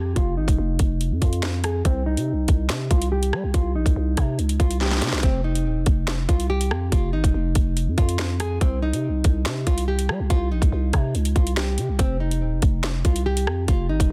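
A half-time drill groove in 4/4 drives this tense, dark hip hop excerpt, with the electronic drum kit arriving at 0.2 seconds and sitting up front: a hard-clipped kick, a sharp snare, metallic hi-hats, rim clicks and finger snaps. A growling 808-style bass, buzzy over its sine core with a fast attack and decaying notes, sits just as close and anchors the low end. Above them, a classical nylon-string guitar carries the melody, fingerpicked with audible finger squeak, its acoustic tone shaded by a low-pass filter and a digital delay. A filter sweep on the guitar runs through the first five seconds, and a brief drum fill leads into 5.2 seconds as the harmony moves between Cm and F5. The sound is dry, dense and heavily limited in a modern master.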